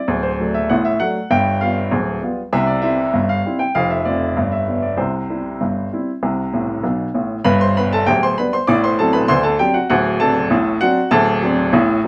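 Cheerful and jaunty, this short ragtime piano passage is cut from a longer piece. A single upright piano carries everything alone from start to finish, its tone warm and woody and placed up front. The playing sits in a straight 2/4 feel and covers a broad span of the keyboard, from deep bass notes to bright upper register. A short piano fill at 6.5 s leads into a new section at 7.5 s, where the harmony settles around a fresh centre before the passage ends at 12.1 s. A moderate studio reverb lends the instrument a touch of room around its close, up-front sound.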